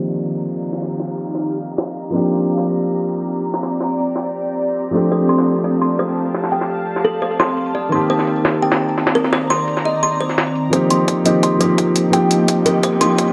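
Liquid drum and bass at 171 BPM, soulful and rolling, with a dark, mellow baby grand piano up front under dub echo, an ethereal, airy pad of detuned sawtooth and triangle unison voices washed in ensemble chorus and phaser, and a gritty, pitched-up jungle drum kit with a high-tuned snare carrying the hi-hats through 10.6 s. A woody, hollow kalimba enters at 5.1 s with tape-echoed arpeggios over jazzy chords moving from F9sus4 through Bb69, G9sus4 and Cm9, while a very quiet downlifter and riser frame the passage and a filter sweep runs through the opening. At 10.7 s the build-up begins as an overdriven, tight electronic kick and a compressed electronic hi-hat take over the drums, the kalimba gets its own filter sweep, and the whole mix sits in a lush digital hall reverb.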